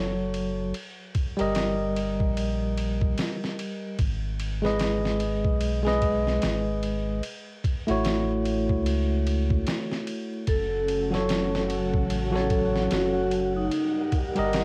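Melancholic and cinematic, this trip hop excerpt sets a barky, bell-like tine electric piano with harmonic tremolo and tape echo over a round, deep dub sub bass and a gritty, pitched-down sampler-style drum kit with a thumpy kick, snare and ride cymbal on cassette tape. At 10.5 seconds a ringing, metallic vibraphone melody with tape echo and full-bodied string-machine cellos with ensemble chorus arrive, joined at 10.8 seconds by an airy, wind-like noise texture in the background, all within light reverb and the vinyl crackle of a home cassette recording.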